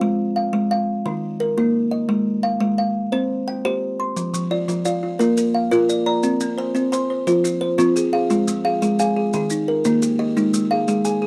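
A dark production with little reverb opens this hypnotic, trance-like cut from a longer southern African traditional piece, an mbira-style interlocking cycle in F dorian at 116 BPM in 12/8, where a woody, hollow-box kalimba plucks bright, short arpeggios up front from the start, grainy, mellow maracas enter close at 4.2 seconds, and a second kalimba on a solid board joins at 4.3 seconds with thumbnail-plucked notes that buzz with an airy edge.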